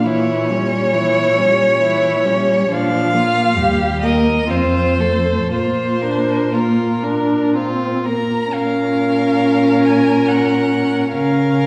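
Tender and warm, this slow romantic movement for string quartet moves in a rubato 3/4 at 58-72 BPM, cut from a longer piece. The first violin carries the melody with a rich, expressive tone, its vibrato and portamento sounding distant yet up front. The second violin shapes a focused second line with a smooth top, while the viola, the most present part, supplies a soft-attacked accompaniment with its own vibrato and sliding phrasing. Underneath, the dark cello holds the bass with expressive portamento. The harmony opens on a Bbdim7 and passes through Bb, Eb and F before settling into Bb minor at 8.5 s, closing on Bbm/Db. A reverberant recital hall places the quartet further back in the room, giving the sound a soft, rounded air.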